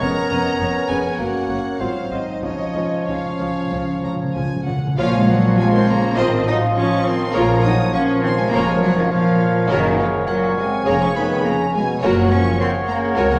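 Dramatic and urgent, this quick classical-period orchestral passage moves with rubato at 93-107 BPM in 4/4, turning from Db major to Bb minor at 5.0 s, as a rich, focused violin section carries the melody over a smooth second violin section, a clear oboe and a mellow clarinet, while a bassoon, expressive violas and a sustained French horn section fill the middle, warm cellos and double basses with portamento anchor the bass, timpani with medium mallets add a close, dry fill from 2.4 s, and an airy flute ensemble joins at 5.0 s, the whole heard from further back in a wet scoring-stage reverb.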